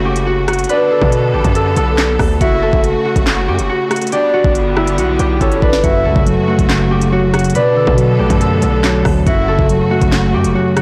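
A ringing, fingerpicked concert harp carries the melody in this ominous, menacing drill cut from a longer piece, set over a half-time groove of knocking kick, sharp snare, crisp hats, rim clicks and handclaps, with a heavy, aggressive, distorted 808-style bass. Bright, biting symphonic strings hold lush bowed chords with vibrato, while a breathy, flute-like synth lead with chorus and digital delay adds a soft second line. After a drum fill, a clean, mellow tine electric piano joins at 5.8 seconds, all inside a blown-out, overdriven recording dusted with vinyl crackle.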